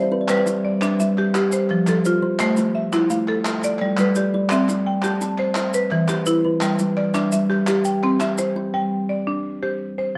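Southern African traditional music in an mbira-style interlocking cycle at 114 BPM in 12/8, G mixolydian, this rippling, hypnotic excerpt sets a buzzing, bright marimba struck with hard mallets against a hollow, ringing thumb-plucked kalimba that opens with a fill, while distant group handclaps and grainy, mellow maracas add light percussion from 0.3 to 8.5 seconds, the kalimba dropping out at 9.1 seconds and the marimba carrying on to 10.2 seconds, all within a dark production with moderate studio reverb.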